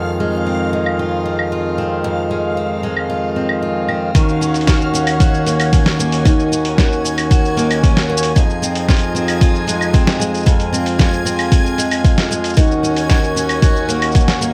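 A deep, tape-warm electronic kick drum sits up front from 4.2 s in this autumnal, wistful folktronica excerpt at 114 BPM in Eb dorian, joining a reedy, breathing hand-pumped harmonium that holds sustained chords in plate reverb, a picked steel-string acoustic guitar playing arpeggios through tape echo and plate reverb, a muffled, pitched-down lo-fi sampler-style kit of cabasa, claves, hi-hat and snare that enters at 0.9 s, and a dreamy, detuned backwards swelling texture floating high and soft above, while the chords alternate between Fm7 and Ebm7 in a moderately reverberant room.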